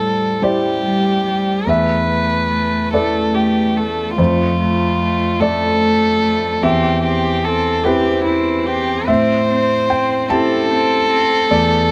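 In a rubato 6/8 at 49 BPM, this melancholic, fragile neoclassical fragment in A minor, cut from a longer piece, sets a dark, intimate violin melody bowed sul tasto with light vibrato over a floating cello second line touched by slapback echo, while a felt-muted upright piano with audible action noise plays a mellow accompaniment through Am7, Esus4, F and C/E, all heard up close in a dry, detailed room.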